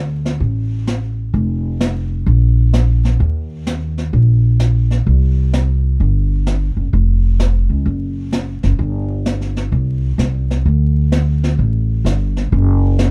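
A dry sound carries a layer of vinyl crackle through this swinging, sophisticated jazz fragment of small-group swing and bop at 129 BPM in 4/4 with a swung eighth-note feel. A woody, up-front pizzicato upright bass on steel strings opens from the start, moving between F1 and Eb2. From 0.3 seconds a distant, roomy brush kit joins behind it, with brushed and medium-tuned snare, hi-hat and a boomy kick, and both play through to 13.1 seconds.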